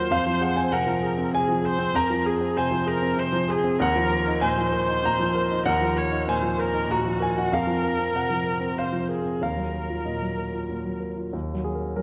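A moderate concert-hall reverb, about 2.2 seconds long, surrounds this short neoclassical excerpt for piano and strings, which is fragile and reflective in mood. It sits in Eb dorian at 97 BPM in 3/4, played with a rubato feel and tuned slightly below standard pitch at A4 = 439 Hz. An intimate, warm grand piano sits up front, its short sustain and audible action noise giving it a close, tactile presence as it spans from Eb2 to Bb5. A single bowed viola joins from the start in a narrow middle register, its tone rich, smooth and even, with vibrato and a distant quality. The harmony moves from Fm through Ebmadd9 and Bbsus2/F, returning to Ebmadd9 before coming to rest on Ebm. The viola stops at 11.0 seconds, and the piano closes the passage alone by 12.0 seconds.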